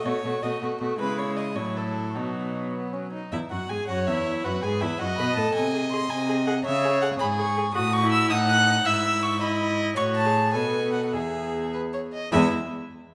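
Heard through a reverberant recital-hall bloom, this cheerful, lively classical-period movement for string quartet in E major runs at 99-110 BPM in 6/8, with the close first violin carrying the melody up to F#6 in an airy-bowed, gut-string period tone, the second violin adding a reedy second line, the more distant viola supplying accompaniment with light vibrato, and the nasal cello holding the bass from 0.1 s as the harmony passes through C#m and a diminished chord before settling on E at 11.1 s.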